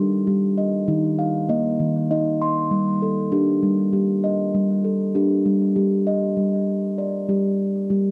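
Set in a gentle 6/8 with a straight, unhurried pulse, this brief cut from a longer world-meditative piece has a hypnotic, inward calm. A single steel tongue drum carries everything as the solo voice, sitting up front in the mix and spanning a range from Eb3 up to C6. Struck with soft rubber mallets, its notes sound round, pure and mellow, each one ringing out gently. The harmony settles on G5, moves to Eb at 0.9 seconds and returns to G5 at 2.7 seconds, with the opening passage giving way to a short closing stretch at 6.4 seconds. A wet studio reverb and a dark production surround the drum, lending the whole a soft, meditative glow.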